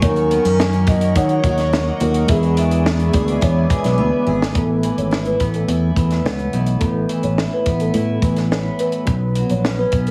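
This laid-back, dreamy indie and bedroom pop fragment moves at 106 BPM in a straight 4/4, driven by a compact cocktail drum kit with a punchy kick and high-tuned snare sitting dry and up front, alongside a warm, direct fingered electric bass that carries the low end. A hollow, woody clarinet-like synth lead carries the melody with vibrato, lush chorus, slapback echo and plate reverb until 4.3 s, while a mellow kalimba with fingertip plucks and an airy ring traces a second line throughout. Underneath, a bright, full-bodied picked steel-string acoustic guitar with a warbly pitch drift and soft, round electric-piano-like synth keys with a cassette-tape tint fill out the accompaniment, the keys tucked in the background. A cloudy, evolving granular pad holds blurred, detuned chords until 4.5 s. The harmony moves from D#m7 to E7, and a drum fill from 4.0 to 4.6 s leads into a second section built on Asus2 and later Bsus2, all heard through a heavily compressed, radio-like mix with small room ambience.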